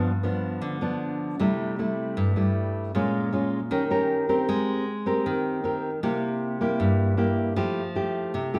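A solo nylon-string guitar, thumb-plucked with fresh strings and a deep, classical tone, sits up front in this relaxed, breezy bossa nova excerpt at 156 BPM in straight 4/4. Spanning G2 to Bb4, it moves through a harmonic passage from G7 and C6 through Bbm7, Eb7 and Abmaj9 before settling on C7 and then Fmaj9 at 7.6 seconds. The instrument rings into a lush recital-hall reverb that lends the short recording the spacious glow of a church or concert hall.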